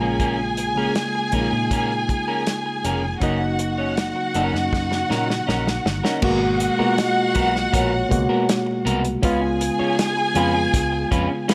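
A lush, up-front violin section with vibrato and portamento carries the second line in this smooth, silky slice of 1970s-style soul at 80 BPM in G# dorian, moving through A#m7, F#6, G#m9 and C#7. Beneath it, a reedy, lightly overdriven electric piano supplies accompaniment, a slightly broken-up picked guitar plays a riff through a small old amp, and a foam-muted, round bass sits under a dry drum kit with dark cymbals that plays a fill leading into the second section. A delicate, bell-like celesta rings in the background from 7.0 to 8.9 seconds, all within light studio reverb.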